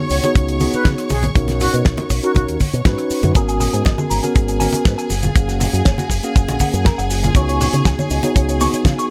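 A mellow tine electric piano and a lush, bowed string section open this sleek, cosmic nu-disco excerpt at 120 BPM in 4/4, both pulsing with sidechain pumping, the piano trailed by digital delay. Moments later an airy metal flute with a soft attack and vibrato sings a brief melody through delay, ending at 2.4 seconds. Underneath, a warm fingered bass through an envelope filter, a damped 70s kit with a fat snare, hi-hat, rim click and cabasa, and hard-hand maracas and congas set a straight groove, while a tight, dry kick sits up front from 0.4 seconds. At 3.4 seconds a bright, twangy picked guitar with an envelope filter, subtle chorus and digital delay adds a riff. The harmony moves from C#7sus4 through Bmaj7, G#m11 and F#maj9 back to C#7sus4, set in a small room ambience.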